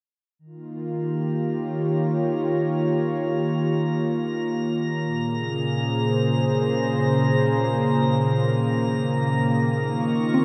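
Luminous and warm, this ambient excerpt in free time rests in Eb mixolydian, where a smooth, detuned sawtooth pad with chorus sits up front holding sustained chords from Eb7 to Bbm7 and back. A glassy texture of drifting overtones fades in from 1.1 seconds with shimmer reverb, and a very quiet, organ-like sine drone enters at 4.7 seconds. A soft, pure FM bell arrives only at 10.3 seconds, all of it set in a lush hall reverb.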